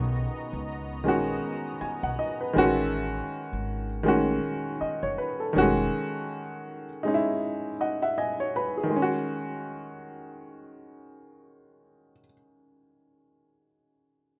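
Relaxed and smooth, this short R&B excerpt swings gently in 4/4 around an intimate baby grand piano that sits up front, with audible action noise and short sustain, carrying the accompaniment to 14.4 seconds and adding a fill just before the second section arrives at 8.9 seconds. A detuned, soft-attack sawtooth pad treated with chorus and tremolo lays sustained chords only at the very start, while a woody, plucked upright bass with steel strings anchors the low end until 5.9 seconds. The rough home-demo mix has small-room ambience and a dull, rolled-off top, with the harmony moving from Bmaj9 through A6 and Emaj9 to G#7sus4/D#.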